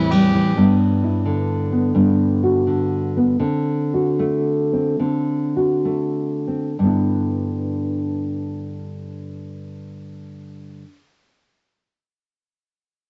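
A dark, full-bodied nylon-string guitar sits up front, thumb-plucked with audible finger squeak, carrying this nostalgic, heartfelt folk fragment in a straight 6/8 through chords of Am7, G6 and D7, slowing down between 0.6 and 6.8 seconds, while a clear, smooth violin with vibrato sounds only briefly at the very start, all captured on a home cassette recording with light reverb and a muffled top end.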